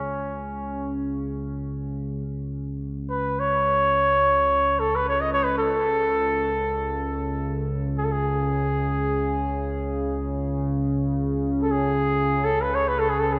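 A mellow trumpet carries the melody in a classical, solo style, sounding distant and roomy yet up front, its line ranging from C#4 to D#5 and trailing a diffuse ambient delay. Beneath it, an analog drone holds the low register from C#2 to C#3, built from sawtooth and pulse waves with pulse-width modulation that keep its evolving tone in motion. The drone has a slow attack, sustained body and long release, and its chorus gives it a warm, mellow glow. This is world meditative music in free time, spacious and unhurried, with both parts sounding together throughout the roughly 13.4 seconds cut from a longer piece. A lush, wet hall reverb with a 2.9-second decay surrounds the pair, deepening the sense of calm open space.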